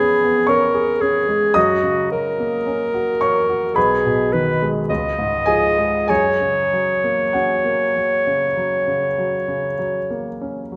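A bright, close-miked clarinet and a clear grand piano open together in this tender, lyrical romantic duo, a short cut from a longer classical piece in F# major, moving slowly at 47-58 BPM in 4/4 with free rubato and tuned to A4 = 441 Hz. The up-front clarinet sings the solo melody between F#4 and D#5 over intimate piano accompaniment spanning B1 to D#6, where the instrument's action noise is audible, as the harmony passes through C#7/E#, F#, G#m/B and C#7 before settling on F#. A reverberant recital hall surrounds the pair, and the clarinet finishes at 10.4 seconds, leaving the piano to close at 10.8 seconds.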